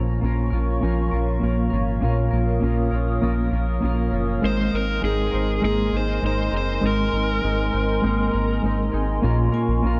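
Hazy and ethereal, this dream pop excerpt drifts over a round, deep analog bass, a warbling, lo-fi tape-like pad with chorus, a hollow-body semi-hollow electric guitar with harmonic tremolo and lush chorus, and a clean, compressed mellow electric guitar playing arpeggios through subtle chorus and delay. An up-front overdriven slide guitar carries the melody with delay from 4.5 to 8.6 seconds, and a bright, metallic vibraphone with medium hard mallets rings in at 9.5 seconds. The chords move between Bb minor and Ab add9 under a moderate plate reverb and a dark, warm production.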